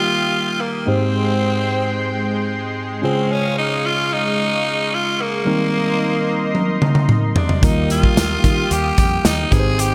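A glossy, big arena sound with a moderate, lush hall reverb opens this nostalgic 1980s-style pop excerpt in Eb major, moving at 111 BPM in a straight 4/4. A breathy, raspy tenor saxophone carries the melody up front with vibrato, its slapback echo and delay framing a gritty, present solo line. Beneath it, a worn, slightly out-of-tune tine electric piano heard through a combo amp supplies mellow accompaniment, while a thick, detuned unison pad with chorus holds sustained chords over Ebadd9, Abmaj7, Db and Cm7/Eb. The modern studio drum kit arrives at 6.5 seconds with a fill, bringing a punchy kick and a medium-tuned snare. At 7.6 seconds a round, dark, foam-muted fingered electric bass joins alongside a jingly, very quiet tambourine as the harmony returns to Ebadd9.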